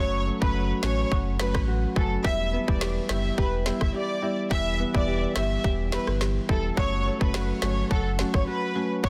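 A tough, hypnotic dancehall groove in straight 4/4 is driven by an overdriven electronic drum kit that enters at 0.4 s, with a tight kick, rim click and a woody snare up front, over a deep, full sine sub bass with an octave that sits just as forward. A lush, smooth violin section carries the melody with vibrato and a touch of delay, while a rosewood marimba played with medium mallets and a dark, fingerpicked nylon-string guitar spinning arpeggios fill in the accompaniment as the chords move between F#m and Em. Light small-room reverb surrounds the dense, heavily limited modern master of this fragment cut from a longer piece.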